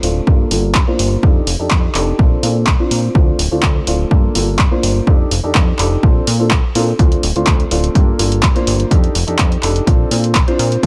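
Filtered disco house at 125 BPM in Bb major with a joyful, sunny mood, this cut from a longer piece sets a dark, mellow grand piano with phaser and sidechain pumping over a plucky, funky sawtooth bass, punchy tape-warm analog handclaps and hi-hats that pump on the hats, and an up-front electronic kick entering at 0.3 seconds, all cycling through Gm7, F13, Bbmaj7 and Dm7 beneath a filter sweep that runs the full 10.9 seconds in digital ambience.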